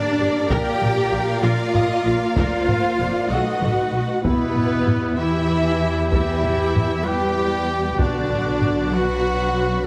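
Heavily compressed, radio-style sound in a moderate scoring-stage reverb frames this dark, heroic excerpt of an epic orchestral film score at 64 BPM in 6/8, where a lush, focused violin section carries the melody over a smooth second violin line, an airy close-miked flute, vibrato-rich violas, very quiet French horn chords, a soft-attack string section, expressive cellos and woody double basses, with hard-stick taiko from 0.5 s and a distant, roomy solo trumpet adding stabs from 4.3 s as the music settles into E minor.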